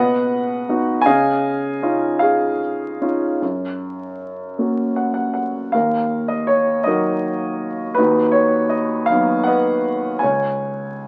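A clear, intimate grand piano plays alone and up front with audible action noise, a tender, peaceful classical fragment in F# major, its rubato 6/8 lilt at about 53 BPM moving through B, C#add9, F#, D#m and B/D# before the harmony falls away at 10.2 seconds, all framed by light reverb and the crackle of a very old 78 rpm record.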